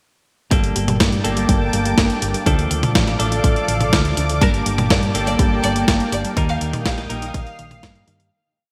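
Italo disco with a danceable, bittersweet mood, where a punchy four-on-the-floor electronic kick and a sampler-style 12-bit drum machine with hi-hat, snare and toms drive alongside a round, dark hollow-body bass in eighth notes, while a twangy clean guitar pushes syncopated stabs, a very quiet detuned pluck repeats an eight-step arpeggio, a thick sawtooth pad holds sustained chords with chorus, and an intimate violin section joins at 4.4 s with a soft, delayed riff before the whole piece fades out from 5.7 s in a lush hall with bright 1980s-style digital sheen.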